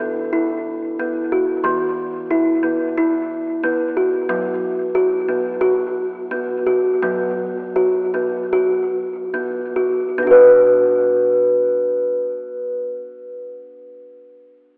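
A woody, ringing kalimba plays solo and up front through this gentle, meditative world piece cut from a longer work in B minor pentatonic, its thumb-plucked notes lightly swung at 68-91 BPM in 4/4 and slowing from 4.3 to 10.2 seconds as the harmony moves from E5 through F#sus4 to Bm, the instrument coloured by cassette tape and tape echo inside a lush hall reverb lasting 2.4 seconds, with a home-cassette, telephone-like sound.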